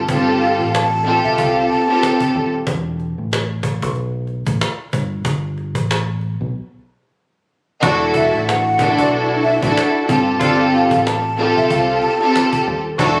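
Lush, bowed strings and a deep, round fingered electric bass open this moody, tough boom-bap hip-hop passage, cut from a longer piece, with a snappy cajon struck by hard hands joining at once. The groove sits at 93 BPM in 4/4 with a swung sixteenth feel, and a breathy, hollow jazz flute with soft attack and vibrato floats a brief line above over suspended chords. From 2.7 seconds the music breaks down to just the dark bass and the acoustic, small-room cajon, its snares rattling. At 7.8 seconds the smooth, up-front strings return alongside a distant, roomy horn section playing pop-style stabs with light vibrato and slapback echo, and the mellow flute rejoins shortly after, also touched by slapback echo. The whole take has a light studio reverb and the character of a phone recording made in the room.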